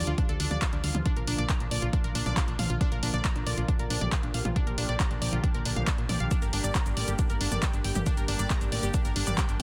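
A straight 4/4 pulse at 137 BPM drives this bittersweet uplifting-trance fragment, where a punchy electronic kick and a tape-warm analog drum machine of handclaps, hi-hat, shaker and toms, both re-recorded in a small room, sit under a round, dark FM bass with sidechain pumping and a bright, detuned sawtooth pluck whose arpeggios carry chorus, tape echo, sidechain pumping and a filter sweep, all moving from Dm to Bb and then Gm at 6.3 seconds within light reverb and a dense, heavily limited modern master.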